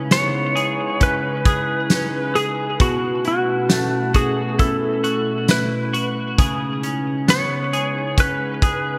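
A nine-second excerpt of ethereal, melancholic dream pop at 67 BPM in C# minor, moving from C#m7 to B7sus4 at 2.8 seconds and back to C#m7 at 6.4 seconds. A warbling, detuned, lo-fi pad with chorus holds sustained chords beneath bright, compressed arpeggios from a semi-hollow electric guitar treated with analog chorus and delay. Up front, a twangy lap steel guitar carries the slide melody through delay, while a loose acoustic kit with a fat snare, tight kick, hi-hat and tambourine sits in gated reverb, all within a lush hall and a bright 1980s-style digital sheen.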